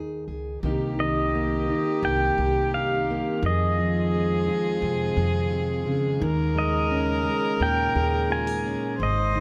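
Hopeful and heartfelt, this acoustic folk-pop ballad excerpt moves at 86 BPM in a straight 4/4, opening with a full-bodied, fingerpicked steel-string acoustic guitar and a woody, dark pizzicato upright bass on an Ebsus4 before settling through Cm7, Fm7 and Eb7sus4. At 0.6 seconds a reedy, bowed viola with light vibrato and a gut-string tone adds a second line over a soft, floating chamber string section in the background. At 1.0 seconds a clean, twangy pedal steel guitar up front takes the melody with slide and volume swells, all set in a moderate large studio reverb.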